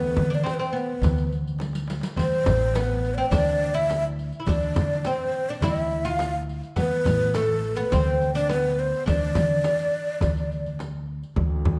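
A moderate recital-hall reverb surrounds this soulful, hypnotic excerpt of a Turkish makam ensemble in D makam nikriz, moving at 104 BPM in a straight 4/4 and tuned to A4 = 438 Hz. Up front, a close-miked, breathy ney carries the melody with vibrato and a hollow, mellow reed tone, while a plectrum-plucked fretless oud with double strings adds a woody second line beneath it. A pizzicato upright bass on steel strings supplies a growly foundation, and a deep, large frame drum joins the small clay darbuka and a vintage, band-limited riq with bright jingles, all played with hard hands, the darbuka and riq sitting in the background. A drum fill arrives at 1.6 seconds, and the ney and oud fall away at 10.8 seconds. At 11.4 seconds a single bowed double bass enters with a focused drone on D2, carrying vibrato as the cut ends.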